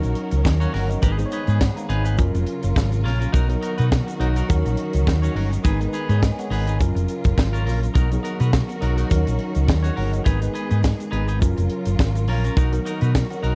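A dark, round hollow-body electric bass sits up front in this driving, sultry disco excerpt at 104 BPM in Eb minor, with a tight funk drum kit of high-tuned snare, tight kick, hi-hat and handclaps pushing a lightly swung groove through a looping Ebm7–Abm–Gbmaj7–Bmaj7 progression. A worn, slightly out-of-tune tine electric piano with light overdrive and a bright, twangy clean electric guitar fill in the accompaniment, while a lush bowed string section holds sustained chords in the background. A grainy tube shaker adds faint texture, and the whole sits in a small room with a dark production.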